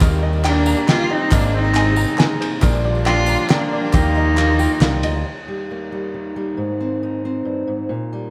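A straight three-beat lilt carries this nostalgic, hopeful indie folk fragment. A muffled, cloth-damped drum kit, a round, punchy electric bass up front, a twangy, plunky banjo with tape echo, a boxy swing-style acoustic guitar, a very quiet bright grand piano, a dark, softly bowed chamber string section, faint vintage handclaps and a jingly tambourine lay the ground for a smooth, distant cello melody with tape echo and a clear, classical-style trumpet second line from 0.5 s, before a fingerpicked steel-string acoustic guitar steps forward at 5.3 s in a moderate recital-hall reverb.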